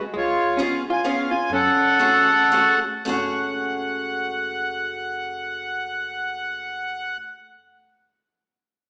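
Bittersweet and whirling, this fragment of a swung musette waltz sets a reedy, slowly beating accordion melody up front over a dark, clean, compressed second line from a vintage hollow-body electric jazz guitar, a boxy, woody archtop acoustic guitar on old strings picking accompaniment from 0.6 s, and a pizzicato upright bass in the background, with the pace slowing through the first 3.1 seconds and a wet recital-hall reverb and small-speaker sound giving it a churchlike space.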